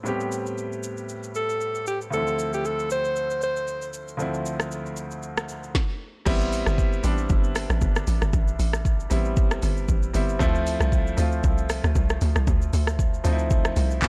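Amapiano at 116 BPM in A minor with a late-night, soulful mood, this short cut opens on an intimate grand piano with audible action noise over Am9 and Dm7 and an electronic drum kit with a deep kick, woody snare, dark hats, handclaps, rim clicks and shaker, while a breathy alto saxophone with light vibrato and delay sings a brief phrase from 1.4 to 3.9 seconds before a punchy FM log drum bass with a noise layer drops in at 6.3 seconds, all set in a dark digital ambience.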